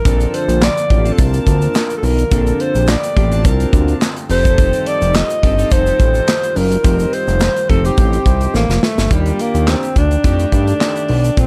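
Dark, dry production gives this short cut from an early-eighties boogie funk track a smooth, feel-good glow. A breathy alto saxophone with light vibrato carries the melody up front over a fat, saturated, detuned analog bass and a polished studio kit of tight kick, snare, hi-hat and handclaps. Meanwhile, a glossy chorused polysynth with filter sweeps and a very quiet, mellow pad hold the chords, and a grainy tube shaker sits in the background. A drum fill at 8.5 seconds leads into a new section at 9.1 seconds, where the harmony shifts from Bbmaj7 and F9 to Ebmaj7 and F13.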